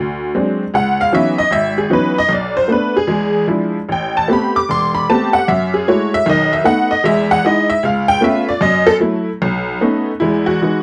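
Solo jazz in E major at 153 BPM, swinging and sophisticated, with swung eighths and a loose rubato feel in this short cut from a longer piece. A detuned, jangly honky-tonk upright piano plays alone and up front from 0.0 to 10.8 seconds, ranging from E1 to D6 through rich harmony such as D7#11, C#m11, E7b9, Am9 and C#aug7 before settling on Emaj7. The sound is dry and close, like a 1970s studio recording with little reverb.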